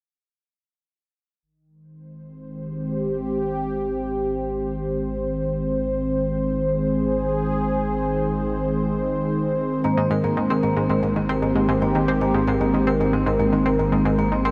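Soaked in a vast, dreamy reverb, this hypnotic, expansive stretch of sequencer-driven ambient space music at 114 BPM opens at 1.4 seconds with a bright, detuned, resonant pad holding an Abmaj7 chord with chorus and a filter sweep, over a deep sine sub bass that fades in, until a mellow, ringing soft-mallet vibraphone playing arpeggios with delay and a round, up-front analog pluck riff with chorus and delay join at 9.8 seconds and carry on to the cut at 14.5 seconds.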